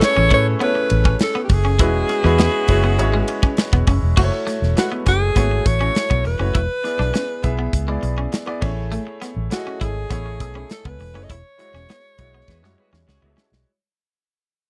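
Dry and close in a 1970s studio manner, this polished 1980s jazz-funk pop excerpt feels urban and bittersweet. A breathy, whispered alto saxophone with scooped notes and slapback echo carries the melody up front. Beneath it sit an up-front drum kit with a tight kick, a round, punchy, foam-muted fingered electric bass, a natural-sounding concert grand piano, and a bright, twangy clean electric guitar riff, with the piano and guitar both bathed in lush chorus. A distant, mellow horn section adds a background second line at the start and again from 12.5 s, while the track fades from 4.2 s and a band accent lands at 11.3 s before a closing drum fill.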